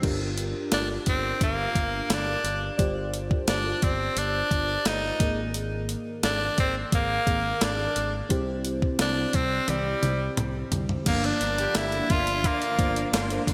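Over a straight 4/4 pulse, a clean 12-bit drum machine with a thumpy kick, gated reverb and a fill at 9.7 seconds drives this dramatic, urgent 1980s-style pop passage, with a round fingered electric bass and a lush, chorused FM electric piano with a soft pad layer underneath. A raspy, forceful tenor saxophone carries the melody up front from 0.7 seconds, its tone edgy and gritty with vibrato. At 11.1 seconds a shimmering vintage string machine enters in the background, joined by tight horn stabs with digital delay, all set in a bright digital production with a lush hall reverb.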